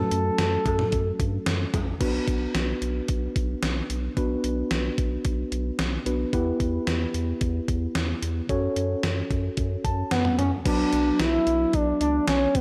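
Light, digital-sounding reverb frames this cool, driving synth-pop excerpt in B minor at 111 BPM, where an up-front, overdriven 80s drum machine with a thumpy kick, gated-reverb snare, hi-hat, toms, cowbell and crash cymbal plays alongside a round, deep analog bass and a worn, slightly out-of-tune tine electric piano that plays a fill at 9.6 seconds, while a smooth, expressive sawtooth synth lead with chorus, vibrato and slapback echo carries the melody at the start and returns at 10.1 seconds.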